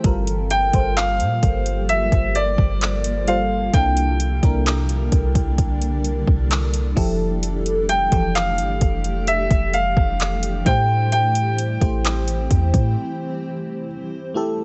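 Contemporary R&B at a slow 65 BPM in G dorian, this late-night, longing fragment of a longer piece moves through Gm9, C13, Fmaj9 and Am7 as a lush, dreamy FM electric piano with a soft pad layer, shimmering with chorus and phaser, plays beside a cloudy, evolving granular pad whose blurred, detuned chords carry their own reverb and a sidechain pump. A clear grand piano carries the high melody from 0.5 s, tinged with tape echo. Up front, a deep, boomy 808-style bass and a smooth electronic drum kit with soft kick, metallic hats, handclaps and overdrive hold the groove until the break at 13.0 s, leaving the keys and pad to ring out under light reverb.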